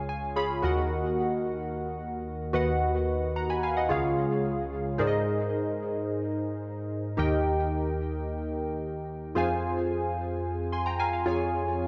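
Glossy and romantic, this short pop excerpt at 110 BPM in 4/4 features glassy digital keys playing alone across a range from C#2 to C6, their detuned, wave-folded sine tone sitting up front with a fast attack, a filter sweep, chorus and tape echo. A brief synth keys fill opens the first 0.6 seconds, and the chords move from C# through D#m and B/D# before settling into Ab major at 5.0 seconds with Abadd9, Eb, Fm and Db/F. A lush hall reverb surrounds the part, and the piece is cut from a longer work.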